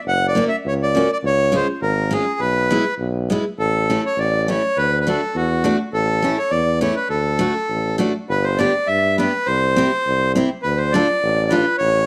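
Set in a light studio reverb, this jolly, festive alpine dance-band fragment in a loose, rubato two-beat feel puts a reedy, clear accordion melody with slapback echo up front over a bright, full-bodied picked steel-string acoustic guitar that joins at 0.3 seconds and a roomy, classical-style tuba bass, with the harmony shifting to a new home at 8.3 seconds.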